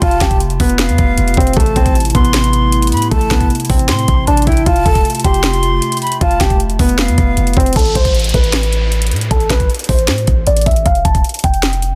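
Dark, melancholic trap-inflected hip hop in A minor, this short cut from a longer piece moves at 155 BPM with a half-time feel in 4/4, its harmony circling between F and A minor before settling on Fsus2. A dark, mellow concert grand piano carries the melody up front, filtered and softened with delay, while a breathy metal jazz flute with lifted highs traces a second line above it until 7.7 seconds. Beneath them, a warbling, lo-fi tape-like pad holds nostalgic sustained chords in the background, its detuned tone thickened by chorus and its own reverb, dropping out alongside the flute. A deep, boomy 808-style bass and an electronic trap kit with a knocking kick, sharp snare and metallic hats drive the track throughout. At 7.8 seconds the arrangement thins to piano, bass and drums as an electronic downlifter sweeps through, all within a dry, dense, heavily limited modern master.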